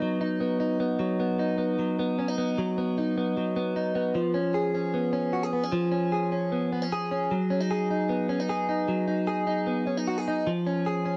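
A bright, clean electric guitar, recorded direct and sitting up front, plays alone throughout this short indie pop fragment cut from a longer piece. It moves at 152 BPM in a straight 4/4 through B/F#, C#7, G#m7 and C#, with picked notes between E#3 and G#4 and a slightly off-standard tuning of A4 = 439 Hz. The compressed guitar carries a lush chorus and a cassette-tape character, and a light reverb and home-recorded sound give the piece a bittersweet, wistful mood.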